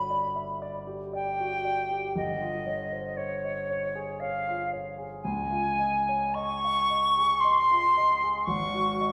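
A silver concert flute carries the melody up front, its pure, straight tone and crisp attack ranging from Db5 to Db6 with an expressive, metallic shimmer. Beneath it a grand piano with long sustain supplies a warm accompaniment spanning G1 to F5, moving through Gmaj7, Dbmaj9#11/G and Dbmaj9 before settling on Ab7sus4 at 8.5 seconds. This luminous, pastoral impressionist classical duo in Db lydian drifts in a rubato 3/4 at 52-61 BPM, and the wet recital-hall reverb, lingering about 1.7 seconds, suggests a church or concert hall in this brief passage cut from a longer piece.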